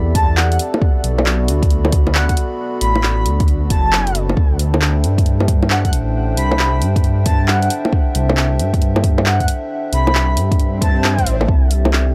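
A rumbling, detuned saw bass with transformer saturation and sidechain pumping sits up front in this rainy, nocturnal future garage excerpt at 135 BPM, swung on the 16ths. A deep electronic kick and a deep house kit of bongos, handclaps and hi-hat, re-recorded in a small room, drive under a moody, nasal pad with chorus and pumping over C69, Bm7 and D9sus4 chords. A breathy, flute-like lead with tremolo, vibrato and analog delay floats above, and an electronic swell sounds from 10.7 to 11.5 seconds in a dry, gritty hardware mix.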